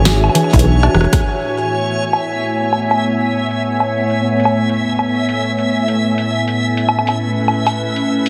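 Intricate and playful, this short IDM fragment moves at 101 BPM in A major with a swung sixteenth-note feel. A glassy FM pad with ensemble chorus and a lo-fi sampler grit holds sustained chords up front throughout, while a reversed, dreamy texture glimmers alongside it in a bright, granular haze. In the opening second, a rubbery, resonant acid bass, a detuned, dusty pluck playing arpeggios and a very quiet velvety lead note share the space over an E7 chord. An analog drum machine with metallic hats, punchy snare, cowbell, rim click and woodblock, softened by low-pass filtering and digital delay, runs from 0.1 s to the end. A deep electronic kick joins at 0.5 s, a drum fill and a band accent arrive, and at 1.2 s the harmony settles on Amaj7 as a filter sweep on the drums carries on to the close. The whole sits in a moderate echo-chamber reverb with a heavily compressed, radio-like sound.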